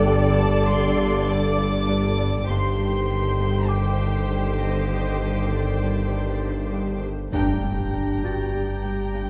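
Cinematic suspense film score with an eerie, mysterious mood, cut from a longer piece in a straight 4/4. Two symphonic violin sections carry the music from the start: one floats the melody with a soft-attacked, sul tasto purity, while the other sings a lush second line with vibrato and portamento. Beneath them, a dark, woody viola section and a warm studio cello section sit in the background, while a dark double bass section, a clean sine sub bass drone and a ringing, fingerpicked Celtic harp riff anchor the low end. A very quiet, bell-like celesta adds delicate sparkle from the opening, and a distant studio violin section joins high above at 2.5 seconds as the harmony moves from Gsus2 to Cmadd9/G. At 7.3 seconds the chord settles on G minor as a solo clarinet with a smooth, classical tone enters on a second line, marked by a band accent and an electronic impact in the background, all set in a moderate scoring-stage reverb.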